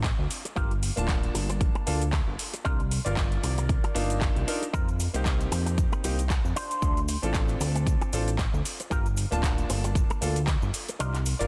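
Cosmic and groovy, this nu-disco excerpt rides a 115 BPM 4/4 pulse with a light swing on the sixteenths, moving through chords from D5 and Gm7 to Cm11, F7sus4, Dm7 and back to Gm7. A fat, nasal analog bass sits up front with a detuned sawtooth-and-square character and a fast, plucky attack, anchoring the low end under a punchy, tape-warm electronic kick. A layered pop drum kit adds metallic hi-hats and handclaps, while a cabasa joins in the background at 4.7 seconds. Meanwhile, a clean, twangy electric guitar plays a picked riff through an envelope filter, colored by analog chorus and tape echo. From 1.0 seconds a brilliant, vintage-toned grand piano supplies long-sustaining accompaniment that pumps against the sidechain, and the kick drops out for the final half second at 11.0 seconds, leaving a dense, heavily limited modern mix with light reverb.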